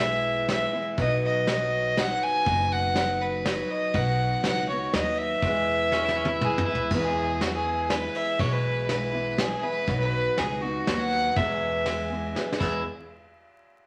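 Heartfelt and easygoing, this short honky-tonk and classic country excerpt in 3/4 puts a clear, airy-bowed fiddle with light vibrato up front, carrying the melody over a bright, full-bodied picked jumbo acoustic guitar, a woody, thumpy pizzicato upright bass and a soft brush drum kit, while a twangy electric guitar at the edge of break-up slips in around 5.9 s alongside a drum fill, all set in a wet studio reverb with vinyl crackle.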